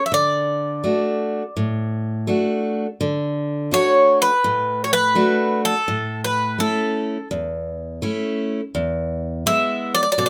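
Greek folk in D major at 84 BPM, sunny and hopeful, this short excerpt from a longer piece features a bright, metallic bouzouki carrying the melody from the start, its doubled strings and occasional octave courses ringing up front. A picked steel-string dreadnought guitar joins at 0.1 seconds with a warm accompaniment, moving from D to A at 5.9 seconds and to E at 8.7 seconds. Close, detailed miking with light reverb keeps both instruments intimate and present.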